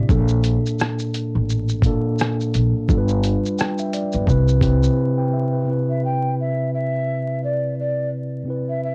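A growly, woody pizzicato upright bass and a mellow tine electric piano heard through its built-in speakers open this cosy, dreamy fragment over Bbmaj7, G7 and Cmaj7. A moment later they are joined by a swung 86 BPM lo-fi hip hop groove in 4/4 from a muffled, compressed sampler-style kit with a thumpy kick, hi-hat, rim click and shaker. The bass and kit stop around 5.0 s, and an airy, hollow jazz flute with vibrato, chiff and tape echo enters at 5.9 s over the piano, with cassette tape colouring the kit, piano and flute amid light reverb and vinyl crackle.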